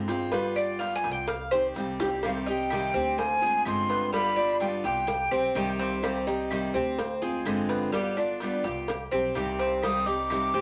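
Nostalgic and warm, this fragment of Cuban son and guajira moves at 126 BPM in C harmonic minor through G7, Cm and Dm7b5, with a metallic, double-strung tres featured in the opening bars before a drum fill at 2.0 s brings in an airy, vibrato-laden silver concert flute up front from 2.2 s, returning briefly at 9.8 s, all over a bright picked steel-string guitar, a thumpy pizzicato upright bass, round low-tuned cowbell and bongos struck with hard hands, grainy background maracas and very quiet woody claves, set in a moderate studio reverb.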